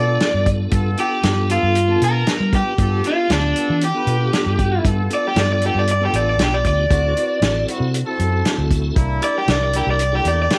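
A dark, overdriven garage guitar takes a picked solo up front through this soulful, rollicking straight-eighth soul blues at 116 BPM in G mixolydian, cut from a longer piece. A piping tonewheel organ with key click, chorus vibrato and a slow rotary speaker fills in beneath, a clear horn section holds sustained chords with light vibrato, and a round, foam-muted fingered electric bass sits up front, with a tight acoustic soul drum kit entering at 0.2 s. The harmony moves from G9 to D9 at 6.9 s and C9 at 9.0 s, all in a small room with light reverb.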